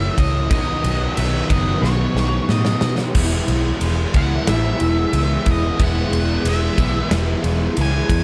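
Set in a small, roomy ambience, this dreamy, wistful shoegaze and dream pop rock excerpt pairs a round, foam-muted electric bass up front with a huge arena drum kit that enters at 0.2 s, with punchy kick, bright cymbals and a fill from 1.8 to 3.1 s, while three overdriven guitar riffs (a bright, very quiet double-tracked one, one washed in reverse reverb and a lo-fi garage one with lush chorus) sit low in the mix beneath a dark octave-fuzz lead melody trailing tape echo and a very quiet, lush sawtooth string machine holding slow-attack chords as the harmony moves from A through Badd9 to E.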